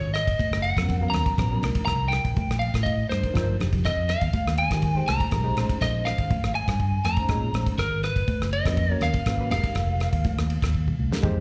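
Electric jazz fusion with a slick, funky mood, moving at 122 BPM in a straight 4/4 feel in F minor, cut from a longer piece. Up front, a lightly driven lead guitar carries the melody with a picked, slightly broken-up, compressed tone and slapback echo, while a round, amped fingered electric bass anchors the low end. A damped 70s drum kit sits forward too, dry and tight with a fat snare and dark cymbals across kick, ride, rim clicks, snare and toms, adding fills around 3.5 seconds and again near the close. High-tuned congas with a thick skin play along in the background from 0.4 seconds, and a reedy, worn electric piano enters at 0.8 seconds, slightly out of tune and heard through its built-in speakers with harmonic tremolo and slapback echo. The harmony moves through lush minor eleventh chords, Abm11, Cm11, Fm11 and Bbm11, and the whole thing sounds like a live club gig heard through the venue's PA, with light club reverb and a dulled top end.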